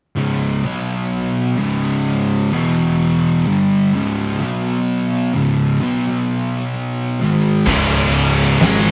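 Two thick fuzz guitars open at 0.2 s, playing a dark, sludgy riff, with one slightly louder and both up front in the mix. Their picked power chords move slowly through C#5, B5 and E5 and back, setting a brooding stoner and doom metal mood in a straight, heavy 4/4. At 7.7 s the band crashes in: a bright, double-tracked high-gain guitar thickens the riff, a round, overdriven fingered bass adds punchy low end, and an oversized low-tuned drum kit hits with a fat snare, punchy kick, hi-hat and dark crash cymbals. The kit sounds saturated and gritty, pumping in a bright stone room. The whole take has the rough feel of a rehearsal-room recording with moderate reverb, and it is cut from a longer piece just as the full band gets going.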